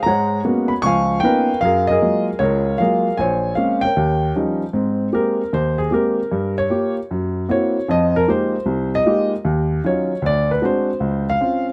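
Solo jazz with a sophisticated, playful swing, cut from a longer piece, in which a lone upright piano with a woody, intimate, vintage tone, long sustain and audible action noise sits up front under close, detailed microphones and light reverb, moving through rich extended chords before stepping into a solo from 4.7 s to 11.7 s.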